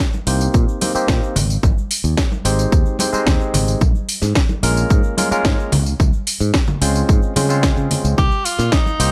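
A punchy, up-front electronic kick and a tape-toned house kit with cracking snare, metallic hats and tambourine open this groovy, sunny nu-disco excerpt at 110 BPM in Ab major, with a vintage egg shaker and congas in the background, before a barky, lightly overdriven tine electric piano under a filter sweep and a bright, fingered electric bass with tube saturation enter at 0.3 seconds over Cm7, Abmaj7, Bbm7 and Dbmaj7, and a breathy, intimate tenor saxophone with tape echo slips in at 8.2 seconds, all in a dry, close sound.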